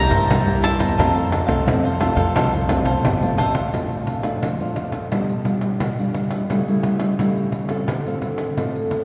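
A dark, fingerpicked nylon-string guitar sits up front through this festive, sunny samba and choro cut in Bb major at 87 BPM, joined by a jingly, hard-handed pandeiro, a bright double-string mandolin melody that stops at 3.0 seconds, and a crisp picked cavaquinho and woody pizzicato upright bass that both stop at 3.7 seconds as the harmony moves to Bbmaj7, set in the long, wet cathedral reverb of a church or concert hall with a dulled top end.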